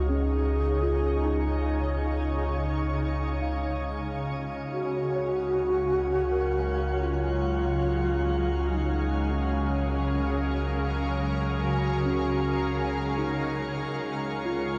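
A dark, luminous wash of shimmer reverb surrounds this slow ambient excerpt at 52 BPM, built on a deep, round sub bass and an up-front pad whose ethereal, detuned chords move from Dbadd9 to Gbmaj9/Db and back. An airy alto flute with vibrato and rolled-off highs carries the melody through a diffuse delay until 13.3 seconds, while a bell-like celesta plays delicate arpeggios in the background. Beneath and above them sit a calm, detuned organ-like drone with ensemble chorus and a glassy texture of drifting overtones that enters at 0.4 seconds and fades in across the passage.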